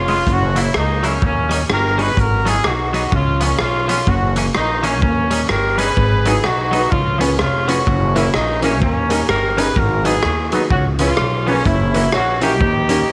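Mischievous and driving, this swung ska excerpt rides a repeating cycle of seventh chords, with a roomy horn section carrying the melody up front over a woody pizzicato upright bass. A twangy, clean electric guitar sits in the background with spring reverb, while a gritty, saturated garage drum kit of hi-hat, punchy kick and rim click carries slapback echo. At 6.3 seconds a dark, slightly detuned upright piano joins with boxy, short stabs, and the band sits in a small room with light reverb.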